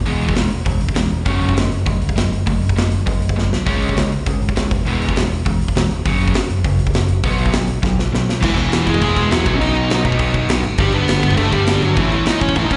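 A live-gig sound heard through the venue's PA fills a small room with recital-hall reverb and a dulled top end, framing this energetic, rebellious punk rock excerpt at 202 BPM in a straight 4/4. A double-tracked, overdriven semi-hollow guitar with slapback echo drives the riff up front alongside a growly, bright picked bass and a big acoustic rock kit with a punchy kick and medium-tuned snare, with drum fills at 3.4 seconds and from 7.8 seconds, as chords move from E through F#m, C#5, F#5 and B5. At 8.4 seconds a dark, smooth, overdriven lead guitar takes the melody over an E, B, G and A progression until the cut at 12.8 seconds.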